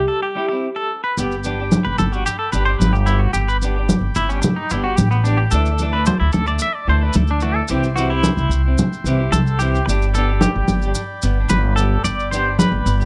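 A hollow, warbling clarinet-like synth lead briefly sounds a G4 with chorus over twangy, compressed electric guitar arpeggios with tremolo and slapback echo and a woody, dark pizzicato upright bass, opening this carefree highlife guitar band excerpt in G major at 110 BPM; a second clean picked guitar with spring reverb joins at 0.4 s, and from 1.2 s a clean electric guitar solo carries on as reedy combo organ chords sit in the background, bright, damped congas and grainy maracas fill in the percussion, and the chords move from G through Dsus2 and C back to G, all captured in a dry, close 1970s-style studio sound.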